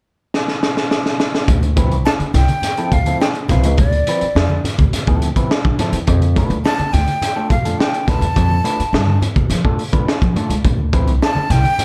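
A crunchy breakbeat kit opens this funk piece with a drum fill from 0.3 seconds, its punchy kick, high-tuned snare and hi-hat sounding gritty and saturated, up front with a rolled-off top. At 1.5 seconds a woody pizzicato upright bass enters on a Dm9 chord, and a moment later low-tuned congas with a thick skin sit softly in the background. An electric guitar at the edge of break-up adds twangy, compressed accompaniment, colored by spring reverb, as the harmony moves to F6 and back to Dm9. From 2.1 seconds a breathy metal flute carries the melody in a straight tone with a soft attack and lifted highs, touched by slapback echo. The mood is hypnotic and sly, and the production is dark and warm, with little reverb, in a clip cut from a longer piece.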